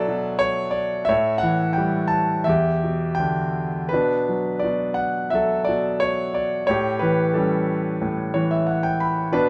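The rhythm flows freely in a rubato 4/4, drifting between 81 and 92 BPM so the pulse breathes rather than ticks. This is a lyrical classical piece for solo piano, a short passage cut from a longer work, with a brooding, bittersweet mood. A bright concert grand carries everything alone, spanning E2 to B5 with a deep bass and a brilliant, natural upper register, placed up front in the sound. The harmony moves through Bm7, A7 and Em7 before returning to Bm7 and then A7, giving the music its wistful, unresolved colour. Near the close, at 8.0 seconds, the piano adds a fill that carries into the final moments, set in a moderate small-room reverb that lends a touch of intimate space.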